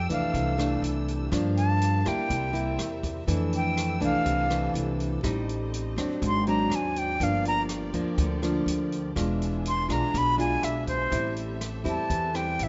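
Softened by light reverb and a rolled-off top end, this recording has a relaxed, sophisticated bossa nova mood and feels cut from a longer piece. A breathy silver concert flute sits up front and close-miked, carrying the melody as an expressive solo in a straight, tongued tone across the whole 12.7 seconds. Beside it, a bright, full-bodied nylon-string guitar is fingerpicked in a classical manner, with an occasional finger squeak. Underneath, a woody pizzicato upright bass holds the low end, and an acoustic jazz kit enters at 0.1 seconds with hi-hat, rim click and a boomy kick, heard naturally in a small room. Far in the background, a muted symphonic string section bows lush, veiled chords con sordino with vibrato over rich harmony that moves from Fmaj13 through Ab7#11 and E7b9 to Am7.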